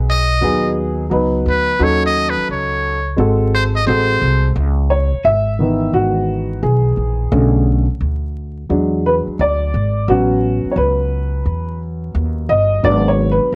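A muted trumpet leads the start of this mellow, nocturnal jazz-hop excerpt, its buzzy, breathy tone set in plate reverb over a dark upright piano and a pizzicato upright bass. The groove sits at 87 BPM in 4/4 with a 65% swing on the sixteenths, in C# minor with slightly low tuning. The trumpet solo lasts until about 4.5 seconds, after which the piano takes the lead from 4.6 seconds through the end of the clip. The piano sounds smooth and vintage, while the bass is woody and warm, both placed up front. Jazz harmony moves through chords such as G#m7, G#7b9, C#m9 and A69, and the whole mix carries light reverb, worn cassette tape warble, wavering pitch drift and vinyl crackle.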